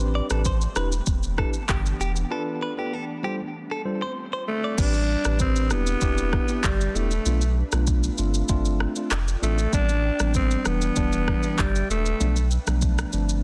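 Smooth and hypnotic, this afrobeats excerpt in A minor moves at 97 BPM over an electronic afro-pop drum kit with a deep kick, handclaps, rim click, shaker and crash, its snare softly clipped, while a thick, saturated sub bass sits up front beneath mellow tine electric piano chords and an ethereal, airy pad with ensemble chorus in the background. A bright, twangy clean guitar riff with spring reverb and tape echo plays from 0.2 to 4.7 seconds, through a break from 2.3 seconds, before a breathy, raspy alto saxophone with vibrato and tape echo takes the lead at 4.5 seconds. The Am11, Em7, Bm7b5 and G9sus4 cycle repeats under a dense, heavily limited modern master with little reverb.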